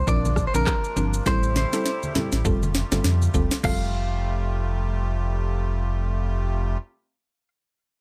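A dry afrobeats excerpt with a breezy, sunny mood and a swung sixteenth-note feel, built on a deep, sine-like sub bass with an octave and an up-front electronic drum kit with a deep kick, sharp snare, handclaps, rim clicks, shaker, toms and crash, plus low-tuned congas struck with hard hands in the background. A bright, twangy clean electric guitar carries the melody through digital delay, while a woody, round mallet-like synth pluck with chorus adds accompaniment and a reedy, sweet accordion holds sustained chords. A drum fill runs from 1.3 to 3.6 seconds, the drums and congas drop out just before 4 seconds, and guitar and pluck carry on to the end at 7.5 seconds.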